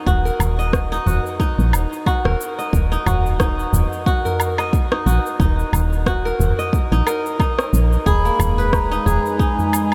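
A swung 16th-note groove at 90 BPM in 4/4 drives this hypnotic, mystical organic downtempo piece in Eb minor, where a deep electronic kick, produced shaker, woodblock and rim click, and a very quiet low-tuned tabla sit beneath a woody, round FM bass and an up-front, bright, fingerpicked kora whose ringing arpeggios trail into diffuse delay, until a breathy bass bansuri with vibrato enters at 8.1 s as the harmony moves from Ebm to Abmadd9/Eb and a warbling, lo-fi tape-like pad with chorus, 12-bit grit and sidechain pumping joins at 8.6 s, the dreamy mix soaked in a huge reverb.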